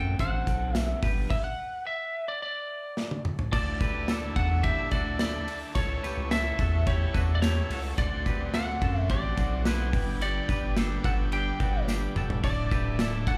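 A dark, slightly broken-up lead guitar melody with slapback and tape echo opens this nostalgic, bright jangly indie pop excerpt at 108 BPM in D major, over a thick saturated sub bass, clean hollow-body guitar arpeggios and a raw overdriven garage guitar in the background, with a boomy big rock kit and a jingly tambourine joining almost at once, a stop from 1.3 to 3.5 seconds, and a buzzy vintage combo organ with light vibrato entering at 3.5 seconds, captured as a live club gig through the venue's PA.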